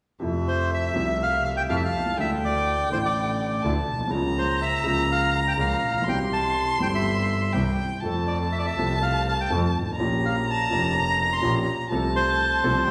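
Violin, grand piano and bowed double bass open together at 0.2 s on an Fmaj7 chord, and the bandoneon joins with the melody at 0.5 s in this elegant, passionate tango passage cut from a longer piece. The tempo sits around 123 BPM in 4/4, but the feel is rubato, moving through Dsus2, Bbm/Db, C, F and Bbm6 before settling on F/C in F major. The bandoneon carries the tune up front with a reedy, bright, airy voice. The violin sings a second line with vibrato and portamento, a warm, expressive tone that sounds both near and faintly distant. The polished, present piano supplies the accompaniment, while a single focused, clear double bass, bowed with vibrato, anchors the low end. A wet recital-hall reverb of about 1.6 seconds surrounds the ensemble, giving it the sound of a church or concert hall.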